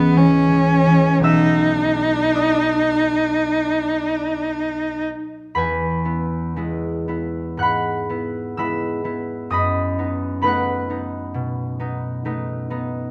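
Rubato and unhurried at 53-68 BPM in 4/4, this tender, warm romantic classical excerpt in E major opens with a rich, focused solo cello singing a bowed, vibrato melody up front until 5.0 s over a fingerpicked concert harp whose ringing accompaniment carries on alone to 13.1 s, moving from C# minor and B into E and B7 in a moderate recital hall.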